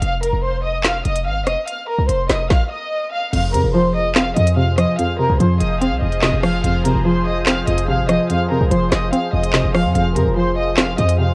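A close, vibrato-rich violin section carries the melody up front in this dark, ominous half-time drill excerpt at 145 BPM in F minor, over punchy, heavy 808-style bass and an electronic kit with a hard-clipped kick, woody snare, crisp hats, handclaps, rim clicks and crash, until at 3.3 s a twangy, chorused resonator pluck and an airy, detuned sawtooth pad join on an F minor chord, all wrapped in light digital reverb and the warbling pitch drift of worn cassette tape.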